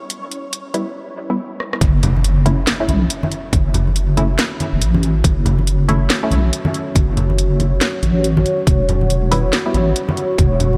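A half-time groove at 140 BPM with a 61% 16th-note swing drives this dark, cavernous deep dubstep excerpt in F# minor, cut from a longer piece. A moody, warbling ambient pad holds sustained chords throughout, joined at the opening by a reversed, bright granular swell that lasts only the first second, while a garage drum kit with a cracking snare, rim click and warm hats enters almost at once. Muted, sawtooth dub chord stabs with a plucked filter and dub echo arrive at 0.7 s. After a drum fill, the drop lands at 1.8 s on F# minor, bringing in a tight, up-front layered kick, low-tuned congas with thick skins played by soft hands in the background, a distant electronic impact, and a deep, saturated wobble bass that dominates the low end before the harmony moves to E minor at 8.7 s. The whole mix is dreamy and soaked in a moderate cathedral reverb, giving the parts an echoing, subterranean sense of space.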